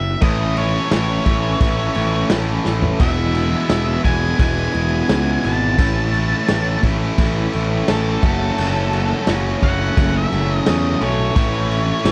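Driving and gritty, this short classic rock passage, cut from a longer piece, moves at 86 BPM in a straight 4/4. An octave-fuzz lead guitar carries the melody from the very start, its dark, picked tone treated with distortion and a slapback echo. Alongside it, a growly picked electric bass with fuzz and overdrive sits up front, while a tight, double-tracked distorted guitar joins at 0.2 seconds with a bright riff. The raw garage drum kit enters at the same moment and stays in the background, its punchy kick, medium-tuned snare, toms and crash cymbal sounding saturated and smooth with a rolled-off top, and a brief fill arrives at 2.7 seconds. The harmony moves from A to E, back to A, then to F#m before returning to A, all captured in a dry, close 1970s-style studio sound with little reverb.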